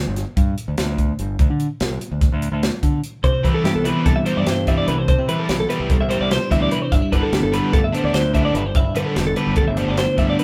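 Math rock and midwest emo in a playful, intricate 9/8, opening with growling overdriven fingered bass and crisp, airy fusion drums with a tight kick, before two bright, twangy twelve-string electric guitars enter at 3.2 seconds, one phased and up front, picking accompaniment, the other picking high arpeggios, joined at 3.4 seconds by a double-tracked overdriven guitar riff as the harmony moves from Cmaj9 to G69, all captured by a band playing live in one room.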